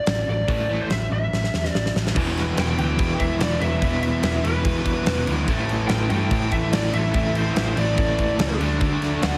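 A heavily compressed, radio-style mix with light reverb frames this short, menacing hard rock excerpt at 144 BPM in a straight 4/4. A huge arena drum kit sits up front, its fat snare, punchy kick and bright cymbals ringing with a hall sound, and it drives a fill from 1.3 to 2.2 seconds into the second section. A dark, round hollow-body electric bass is picked low underneath, while a lead guitar through a small cranked amp carries the melody with a dark, overdriven tone and analog delay. In the background, a bright cranked stack guitar and a crunchy guitar with tremolo play the riff together from 0.5 seconds. A very quiet, double-tracked, distorted guitar joins the riff at 2.2 seconds as the harmony moves from A5 through Em and Am to D, keeping the mood heavy.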